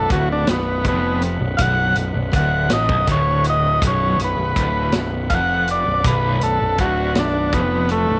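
Psychedelic rock in a straight 6/8, this hazy, hypnotic fragment is cut from a longer piece and rests on a B5 chord. An overdriven transistor combo organ takes the solo up front, its buzzy tone carrying a light vibrato and a slapback echo as it plays the melody across the whole passage. Behind it, a second, clean combo organ holds sustained chords quietly in the background. An overdriven semi-hollow guitar, bright and double-tracked with tremolo, plays a low picked riff. A dark, round fuzz bass sits up front with punchy weight. The vintage drum kit comes in at 0.1 seconds with hi-hat, a medium-tuned snare and a punchy kick, its rolled-off top giving a mellow studio-room feel under a light reverb.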